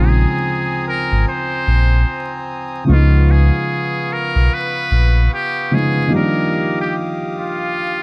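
A metal-muted trumpet carries the melody up front in this melancholic, hazy hip hop excerpt, its buzzy, breathy tone whispered and intimate in a vintage jazz style, softened by a low-pass filter. Beneath it, a felt-muted upright piano plays close and dark, its mellow accompaniment coloured by cassette tape and the same filtered softness. An accordion holds sustained chords further back, reedy and dry-tuned with a close-miked clarity. A deep sine sub bass with an octave sits prominently in the mix until 5.3 seconds, and a break begins at 6.1 seconds as the harmony moves from Bbm11 through Db9 to Ebmaj9. The swung sixteenth-note feel, small room reverb and vinyl crackle give the excerpt its hazy, melancholic character.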